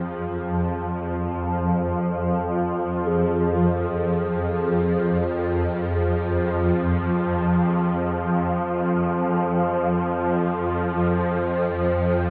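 Unsettling and cavernous, this dark ambient drone in F minor drifts in free time across a 12.3-second excerpt cut from a longer piece, tuned to A4 = 441 Hz. Up front, a swarming drone spans F2 to F3 over an Fm chord throughout, its detuned unison of sine and triangle tones roughened by wave-folding and broken into granular grains. It has a slow attack, long release and tense, evolving character, with its own built-in reverb and a subtle chorus. In the background, a bronze singing bowl struck with a felt mallet rings on Ab4, mellow and metallic with slow beating, set in a boxy small room, and it fades out across the whole passage. The mix is dreamy and soaked in a huge reverb with a 7.7-second decay, its top end rolled off above 11.0 kHz.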